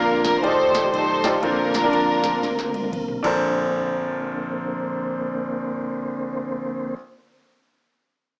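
This short cassette home recording has a small-speaker sound and a moderate small-room reverb, framing a swung, uptempo gospel passage that feels reverent and uplifting. Lush, bowed studio strings carry the melody up front with plate reverb and tape color until 2.9 s. A clear baby grand piano with audible action noise and long sustain accompanies them, while a soft, flute-like tonewheel organ holds sustained chords through a slow rotary speaker and chorus vibrato, over chords moving from F13 to Bbmaj9. A fingered electric bass sits in the background, and a booming analog drum machine with a deep kick, crisp snare, crash, ride and toms plays a drum fill starting at 2.4 s before dropping out at 3.3 s.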